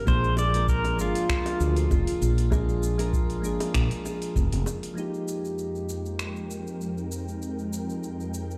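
A clean, fingerpicked pedal steel guitar with slide and volume swells opens this wistful, relaxed sunset chillout excerpt at 98 BPM in F dorian alongside mellow, detuned electric-piano-like synth keys, while a growly, round fretless bass sits up front over a deep, tape-toned analog kick, a layered deep house kit of finger snaps, metallic overdriven hi-hats and shaker with a light 16th-note swing, and tight, high-tuned bongos in the background; the harmony moves from Bb7 to Fm11 at 5.0 seconds as a filter sweep colours the keys, and an ethereal, airy pad enters at 5.4 seconds, with the whole recording played through a big sound system in a bare room, carrying large reverb and a faint mains hum.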